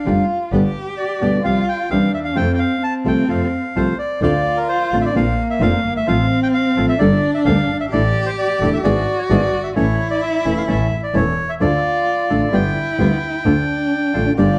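Sultry and dramatic, this tango excerpt moves at 130 BPM with a rubato feel, shifting from F major to D minor at 4.2 s. An airy, reedy bandoneon carries the melody up front with tape echo, while a dark, bowed cello sings an expressive second line with vibrato and portamento. Thumb-plucked classical nylon-string guitar, smooth bandoneon stabs in the background and an earthy, distant bowed double bass fill out a dark, warm mix wrapped in moderate spring reverb.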